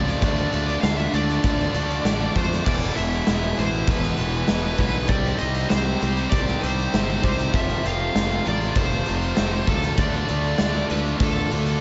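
A punchy, up-front acoustic kit drives this cathartic, brooding passage of quiet-loud alternative rock, with crash, hi-hat, kick and a medium-tuned snare sounding natural in a big room under bright cymbals. Close beside it sits a round, dark fingered bass, overdriven and fuzzed, anchoring the low end from E1 to F2. A high-gain lead guitar carries the melody between A4 and F5 with distortion and slapback echo. Beneath it, three more guitars stack riffs: a heavy high-gain part with slapback echo and a tight distorted one sit in the background, while a double-tracked fuzz guitar stays very quiet. A reedy, lightly overdriven tonewheel organ, barely audible, holds sustained chords with key click and a slow rotary speaker as the harmony moves through Dm, E, Cm and F before returning to Dm. Light reverb and small room ambience surround the mix, which carries nothing above 7.8 kHz.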